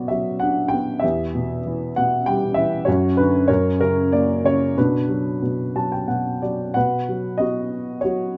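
A dark, mellow grand piano opens alone on a B minor chord, setting a brooding, cool mood in this short passage cut from a longer classical piece. Played in 3/4 with a lyrical, rubato feel between 87 and 99 BPM, the solo piano moves through E minor, B minor over F sharp and F sharp before settling back on B minor, spanning a range from E2 to A5 in a tuning of A4 = 439 Hz. A piano fill arrives at 5.4 seconds and leads into a new section at 6.8 seconds, where the harmony turns to B major and carries through to 8.4 seconds. The instrument sounds worn and intimate, sitting up front with audible action noise and a boxy character. Light reverb surrounds it, and the tone stays soft at the top, with nothing above 7.5 kHz.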